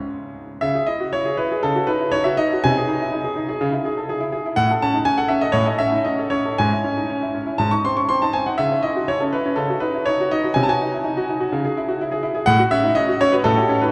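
Elegant and dramatic, this classical-period piano sonatina unfolds in C# minor at 122 BPM in 4/4, played with a rubato feel and tuned to A4 = 444 Hz. A clear concert grand piano carries the music alone from 0.0 to 13.9 seconds, spanning G#2 to C#6 with a deep bass, a smooth, vintage character and long sustain, placed up front. The harmony moves from C#m through C#m11 and G#/B# to A, then settles on C#m/G# and G# before returning to C#m. Near the close it passes through G#7(no3) and a rootless C#m before resting on F#5. A cathedral reverb with a 5.6-second decay sets the instrument in a vast, echoing space, and the passage is cut from a longer piece.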